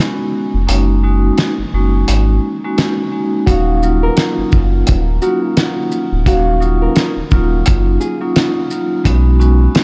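A deep, thick saturated sub bass anchors this gritty, dark boom-bap hip-hop piece in Eb minor at 86 BPM with a swung sixteenth feel, under a mellow, ringing soft-mallet vibraphone with slow motor vibrato and a muffled, cloth-damped lo-fi drum kit whose tight kick stays muted until 3.5 seconds. At that point a thumb-plucked nylon-string guitar carries a short, warm melody through analog delay until 8.2 seconds, all set in a light, small-room ambience.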